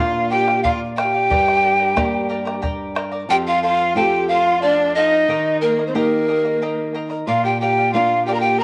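A polished wooden pan flute carries the melody up front, its airy, close-miked tone full of vibrato, tongued attacks and breathy chiff, playing with expressive phrasing. This short excerpt of Andean folk for ensemble, set in a straight 3/4, feels both wistful and festive. Beneath it, a single bowed viola sings a clear, intense second line with vibrato and a slapback echo, while a bright charango adds a shimmering, fingerpicked accompaniment from its doubled strings. A small, dark nylon-string guitar fills out the low end with its own fingerpicked support. A round bombo appears only briefly, from 0.5 to 3.2 seconds. The harmony moves from Bb through Gm, F and Eb before returning to Bb, and light small-room reverb gives the ensemble an intimate, natural space.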